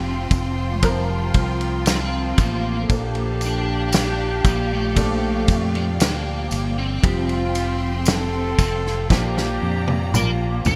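This emotional, heartfelt pop ballad excerpt opens with a lead guitar through a small cranked amp carrying the melody, its overdriven, picked tone thickened by analog chorus, alongside a mellow French horn section playing a distant, roomy second line with light vibrato. Beneath them, a dark, vintage-sounding grand piano with ensemble chorus supplies the accompaniment, a rich studio string section holds lush, bowed sustained chords, and a round, up-front fingered electric bass anchors the low end. At 0.3 seconds a loose indie drum kit enters with gated reverb, its tight kick, medium-tuned snare and dark cymbals sitting prominently, joined by a jingly tambourine tucked into the background. The slow 58 BPM pulse in 4/4 with a straight feel moves through Fsus2, Bbmaj7 and back to Fsus2 in Bb major before settling on Bb6, where a drum fill from 9.1 seconds rounds out the passage. Light reverb and small room ambience frame a bright 1980s-style digital production.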